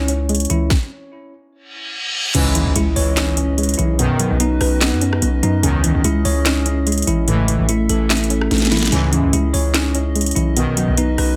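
Hard-hitting and brooding, this half-time trap excerpt in C# minor at 146 BPM pairs up-front overdriven drums with hard-clipped kick, sharp snare and metallic hats against a heavy, aggressive distorted 808-style bass, a bright bell-like tine electric piano with tape echo, a hollow, bouncy square pluck in the background, fat brassy analog synth stabs entering at 2.3 seconds on the impact after a stop and reverse cymbal, and a warbling, nostalgic lo-fi pad settling in from 2.9 seconds, with a drum fill at 8.5 seconds.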